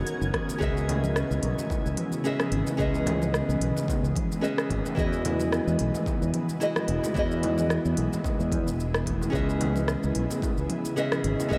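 Sunset chillout at 110 BPM in C# minor, this smooth, warm excerpt from a longer piece sets an up-front, fingerpicked nylon-string guitar with tape echo and shimmer reverb over an ethereal, airy pad of slow-attack sustained chords in the background, moving from Bmaj9 to C#m7 and Emaj7 with a lightly swung sixteenth-note feel. A twinkling granular texture sparkles only in the opening 0.6 seconds, while a growly, punchy fretless electric bass with analog chorus, a deep electronic kick, and a deep house kit with smooth hats, rim click and shaker carry the groove. Very quiet, distant congas with hard hands ring beneath it all, and the dreamy mix is soaked in a cathedral reverb.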